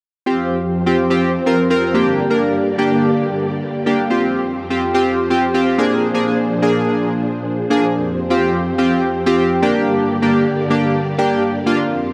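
Bathed in a lush hall reverb with a dark, warm production, this energetic, bittersweet pop excerpt moves at 125 BPM in a straight 4/4 in F dorian, cycling through Fsus2, Gm and Bb7. Glossy, bright retro synth keys built from pulse-wave and sawtooth tones sit up front with pulse-width modulation, a filter sweep, chorus and fast-attack, decaying notes, playing accompaniment until 11.8 seconds. Alongside them a vintage string machine voiced as violas, also up front, holds slow-attack, warbling sawtooth chords with ensemble chorus, sustaining until 12.1 seconds.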